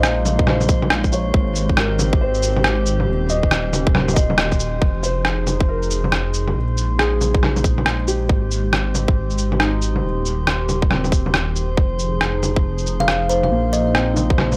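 A dry, gritty hardware sound wrapped in digital ambience frames this melancholic, wistful future garage excerpt, swinging at 138 BPM in F minor and tuned slightly below concert pitch. A muffled, pitched-down kit of electronic rim click, shaker and bongos sits up front with a tape-warm, compressed character, joined at 0.4 seconds by a tight, overdriven electronic kick that dominates the mix. Beneath it, a deep, rumbling detuned saw bass beats with tube saturation. A sidechain pump breathes through that bass, the softly muted upright piano and the warbling, lo-fi pad, which carries a nostalgic chorus and sampler grit in the background. A glassy harmonics texture drifts calmly on a single high note behind the chords, which move from Bb7sus4 through Abmaj7 and Eb7 to Fm7. The kalimba appears only briefly, a bright, woody, close-miked pluck with tape echo that returns at 13.0 seconds for a short ringing phrase before the piece is cut off.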